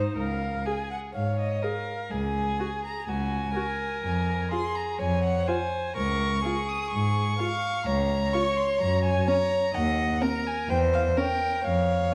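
In a pliant, rubato 4/4, this quick classical-period movement for string quartet feels urgent and restless, a fragment cut from a longer piece. A focused, up-front violin carries the high melody from 0.2 s over a rich, distant second violin, while a smooth, even viola supplies accompaniment until 11.2 s and a close cello anchors the bass, all four players bowing with vibrato. The dark production sits in a reverberant recital hall, and the harmony moves from the opening major chord through a minor colour to a diminished chord at the close.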